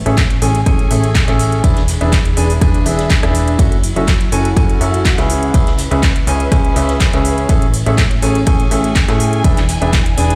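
Piano house with a soulful, bittersweet mood, taken from a longer piece and moving through Amaj7, E7, F#m7 and C#m7 chords. A punchy electronic kick sits at the front, joined by a house drum kit of handclaps, metallic hi-hats and rim clicks, while a vintage brush kit adds a dark ride cymbal and snare deep in the background. A plucky analog bass with a funky, decaying sawtooth character and tube saturation pumps against the kick, as does a clear, woody upright piano riff whose audible action noise and tape echo give it an intimate feel. Behind them, a dark, close string section bows with vibrato and portamento, also breathing with the sidechain. The recording is fairly dry overall yet carries the stony ring of a bare room heard through a big sound system.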